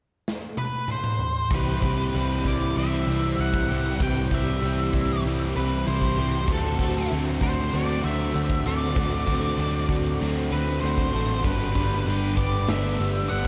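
Shoegaze and dream-pop rock at 97 BPM in 4/4, blissful and hazy, this excerpt is cut from a longer piece and sits in C lydian. A big-room acoustic drum kit opens with a fill from 0.3 seconds, its punchy kick and medium-tuned snare joined by hi-hat and toms, while a fuzzed octave lead guitar enters at 0.6 seconds carrying the melody through distortion and analog delay. At 1.5 seconds the full band arrives as the harmony moves through Cmaj7, D7 and Gmaj7: an overdriven, compressed electric guitar plays a riff tinted by reverse reverb, and an overdriven semi-hollow guitar adds a riff of its own in the background, bathed in lush chorus. Beneath them, a vintage foam-muted picked bass sounds dark and round, and a very quiet direct-recorded clean guitar adds picked arpeggios. The whole mix is soaked in a long hall reverb with a softened top end, giving the layered guitars a dreamy, blurred glow.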